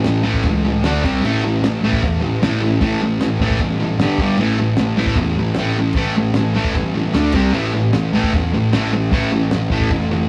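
A thick, bright fuzz guitar, double-tracked and up front, drives a raw, swaggering garage rock riff built on power chords around A, D, C and G in a straight 4/4. Beneath it, an overdriven fuzz bass adds a warm, amped growl, while a cloth-damped drum kit with a fat snare, tight kick and dark cymbals thuds dryly in the background, stopping at 10.0 seconds just before the others. The band sounds like it is playing live in a small room with light reverb, in a short cut from a longer piece.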